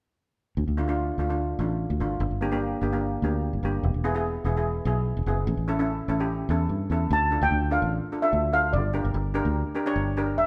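Calypso in D harmonic minor at 147 BPM with a tense, driving mood. Cut from a longer piece, it opens with a dark, round, foam-muted fingered electric bass and a bright, shimmering double-seconds steel pan struck with hard rubber sticks, cycling through Dm, Gm, E and A. At 7.1 s a mellow, metallic lead steel pan played with soft rubber sticks takes the melody up front, all of it heard as a live band in a stone room with a lingering 1.2-second reverb.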